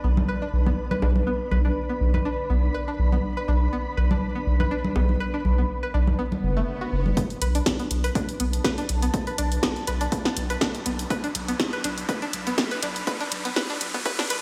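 A big, bare-room sound with large studio reverb frames this quirky, cool minimal techno cut, taken from a longer piece, where a twangy, string-like resonator pluck with chorus, phaser and digital delay rides over a thick, saturated sub bass up front and a blurred, detuned granular cloud pad, all three pumping to the sidechain. Tape-warm congas and bongos with digital delay run from 0.2 to 7.1 s, a swell rises at 6.4 s, and at 7.2 s a dry, overdriven electronic kick and a punchy analog drum machine's hi-hat and up-front snare arrive. From there a build-up begins, with a riser and a filter sweep on the pluck, as the harmony shifts from Bm to Bm7.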